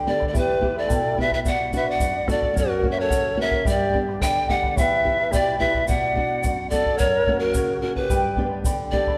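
A mellow, fingerpicked charango with shimmering double strings sits in the background as a fingerpicked flamenco guitar opens this wistful yet festive Andean folk passage, cut from a longer piece in a straight 2/4 pulse. From 0.1 s a breathy, bright bamboo pan flute carries the melody up front with a reedy chiff and vibrato, shadowed by a large wooden quena playing an expressive, end-blown second line, while a round, close bombo and a faint, grainy tube shaker keep time. A repeating chord cycle turns underneath, and a wet recital hall reverb gives the dark, warm production its bloom.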